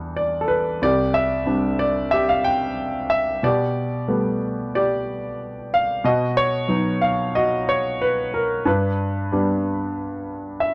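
A clear, worn concert grand piano plays alone, up front with deep bass and short sustain, carrying a heartfelt, nostalgic acoustic folk-pop ballad at 92 BPM in a straight 4/4 through Em7, Csus2, Gadd9/B, B and G across this 10.7-second cut from a longer piece, captured in a dry, close 1970s-style studio sound tuned to A4 = 439 Hz.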